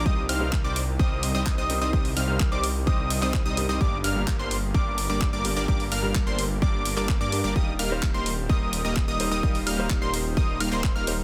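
A punchy, up-front electronic kick drives this anthemic, uplifting festival progressive house passage, with handclaps and hi-hat from a layered house kit joining at 0.3 seconds and a thick, beating, menacing detuned saw bass grinding underneath with tube saturation and sidechain pumping. Above, a catchy, mellow plucky unison lead spins high arpeggios while a detuned supersaw stab carries the riff, both pumping and trailed by dub echo over a Cm, Gm and Eb progression. A warm baby grand piano sits in the background with the same pumping and echo, all held in a dry, dense, heavily limited modern master.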